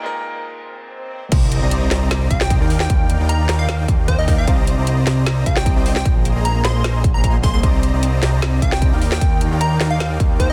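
A half-time 4/4 groove at 152 BPM drives this emotional, lush future bass excerpt in C minor, which opens with a brief break where a bright baby grand piano, intimate and touched with audible action noise, plays pumping chords through a dub echo while a very quiet electronic swell rises from 0.7 seconds. At 1.3 seconds the drop lands with an impact, and an up-front, overdriven electronic kick punches in alongside a trap kit of woody snare, metallic hi-hats, ride and crash cymbals, all carrying a tape-tinged color. Underneath, a fat, nasal analog bass with a saturated filter pluck pumps against the kick, while a huge, compressed supersaw riff with vibrato and a sub octave breathes in the same sidechained rhythm. From 2.3 seconds a catchy, plucky unison lead carries the melody, its detuned square and sine layers sweeping through a filter and trailing dub echoes. The harmony cycles through Cm7, Ebmaj7 and Bb7sus4, and the digital ambience and dense, heavily limited master keep the whole drop loud and glossy.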